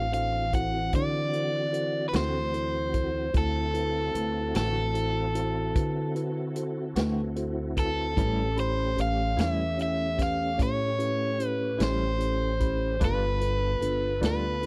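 A bright, overdriven electric guitar leads this gritty, soulful slow blues in D mixolydian, up front over a dry, close 1970s-style studio sound at 50 BPM in 12/8, moving from D7 to A7 at 8.2 seconds and G7 at 13.0. Woody, thumpy pizzicato upright bass on gut strings and a vintage acoustic kit with punchy kick, medium-tuned snare, hi-hat and a rolled-off top drive the groove. Behind them sit a mellow tine electric piano, a clear tonewheel organ holding chords through a slow rotary speaker with chorus vibrato, and a twangy clean electric guitar with tremolo that enters at 2.1 seconds.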